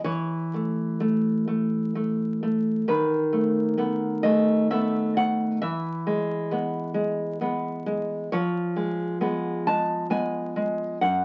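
Rubato and unevenly pulsed in three, this tender, nostalgic romantic fragment for solo nylon-string guitar is fingerpicked up front with a dark, full-bodied tone and audible finger squeak, ranging from F#2 to A5 through chords of A/E, B7/D#, E and C#7/E#, all heard through a wet studio reverb and the muffled crackle of a very old 78 rpm record.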